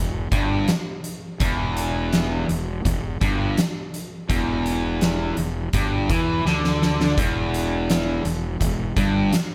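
A bright, double-tracked distorted electric guitar riff leads this gritty, brooding blues rock power trio and southern rock fragment at 83 BPM in E minor, backed by a growly, fuzz-laden fingered bass and an oversized, low-tuned drum kit with a fat snare, punchy kick and pumping room sound that hits a fill at 6.5 seconds, all kept up front with little reverb.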